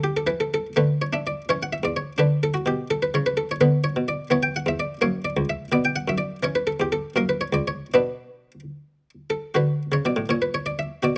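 A lone buff-stop harpsichord opens this short cut from a longer baroque-style suite movement, its muted, lute-like pluck sitting close and up front in the mix. The mood is flowing and radiant, with a lilting compound metre and an elastic, rubato feel that lets phrases breathe. The instrument ranges from a deep C#2 up to G5, and its mid-forward tone in the French manner gives each note a soft, intimate edge. Harmonies move through rich minor-key colour, passing over chords such as Bm9 and Em13 before settling onto a firm Bm at 8.0 seconds. Light reverb and detailed close miking frame the solo playing, and the passage breaks off into a fresh phrase at 9.6 seconds before ending at 11.2 seconds.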